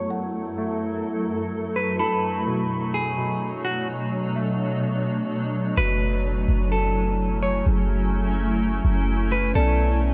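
A dark, clean electric guitar melody opens this ethereal, hazy hip hop excerpt at 127 BPM in a half-time F# minor feel, floating over a blurred, evolving granular pad with its own reverb, warbling lo-fi synth keys arpeggiating through a filter sweep until 5.8 seconds, and a woody, mellow kalimba ringing softly in the background, as the harmony moves between F#m7 and Bm7 and a deep, boomy 808-style bass enters up front at 5.8 seconds.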